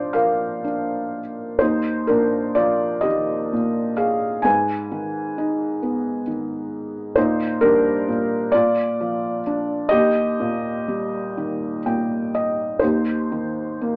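Heard from further back in a small, reverberant room, the recording has the narrow, boxy color of an AM radio broadcast. It is a short cut from a longer piece of classical solo piano, lyrical and peaceful, moving in a slow, rubato 6/8 at roughly 41-45 beats per minute counted in dotted quarters. A single felt-muted upright piano carries everything, its tone soft, mellow and intimate, ranging from Eb2 up to Ab5. The harmony settles into Eb major, leaning through Ab minor before returning home by way of Bb. A gentle piano fill arrives at 11.3 seconds, leading into a brief new section at 12.8 seconds that carries the passage to its close at 14.0 seconds.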